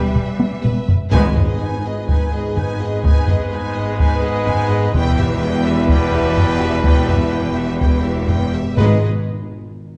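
A dark, warm production sits in a moderate scoring-stage reverb for this epic, relentless cinematic film-score excerpt. At 126 BPM in a straight 4/4 and G# harmonic minor, the harmony moves between E minor and G# minor. A close, expressive violin section carries the melody with vibrato and portamento, while a very quiet, lush second violin section adds a second line and an airy flute ensemble adds one briefly until 0.6 seconds. Distant violas fill in the accompaniment, and a vintage-toned trombone section and mellow French horns hold sustained chords in the background, with a soft-attack solo trumpet adding stabs. The low end rests on smooth-topped cellos and an even double bass section, as a close taiko ensemble struck with heavy sticks drives the piece forward. After a drum fill, a band accent lands at 1.1 seconds along with round, soft-mallet timpani, which return at 8.8 seconds as the music shifts back to G# minor.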